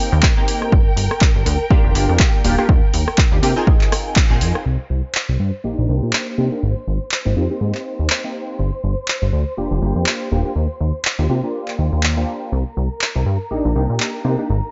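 A punchy analog drum machine's handclaps, hi-hat and rim click swing at 122 BPM in this nostalgic, groovy filtered disco house passage in C minor, with an up-front, tape-warm electronic kick that stops at 4.3 s just after a band accent, a plucky sawtooth-and-pulse analog bass with ring modulation, a funky, detuned polysynth comp with chorus, phaser and a moving notch, and dark, lush bowed studio strings holding sustained chords, the bass, comp and strings all low-pass filtered with sidechain pumping in a dry mix that tops out at 7.7 kHz.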